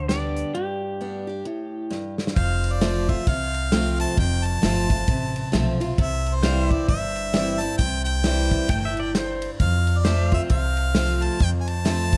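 Swung eighths at 133 BPM in 4/4 drive this easygoing, down-home honky-tonk and classic country passage, where an up-front picked acoustic guitar with fresh strings, a woody, dark pizzicato upright bass and an airy, polished drum kit with a tight kick play throughout, while a twangy, bright pedal steel guitar plays a short solo through a break and drum fill before a clear harmonica with light vibrato takes the melody at 2.4 seconds, joined by a second pedal steel holding warm background chords with volume swells, and the first steel returns briefly at 8.7 seconds, all in a dry sound.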